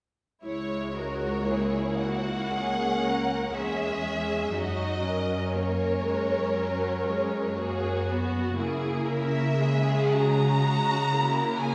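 Heard from further back through a wet scoring-stage reverb, this brief, rubato cinematic string passage feels moving and longing, with dark, evenly bowed violas and lush, vibrato-rich cellos laying the foundation from 0.4 s, a second violin line joining softly, and the expressive, smooth-topped violin melody entering up front at 1.0 s over a slow C#m to F#sus2 and back to C#m progression.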